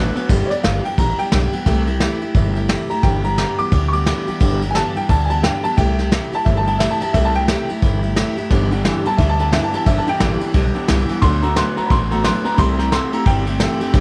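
A small-room recording with light reverb catches a rowdy, retro rockabilly excerpt in G major at 176 BPM with a swung feel, where a clear, slightly detuned upright piano takes the solo from 0.5 seconds over thumpy gut-string upright bass, up-front brushed drums with dark cymbals, a full-bodied picked dreadnought acoustic guitar, and a twangy, slightly broken-up electric guitar riff that sounds briefly at the start and returns at 8.5 seconds.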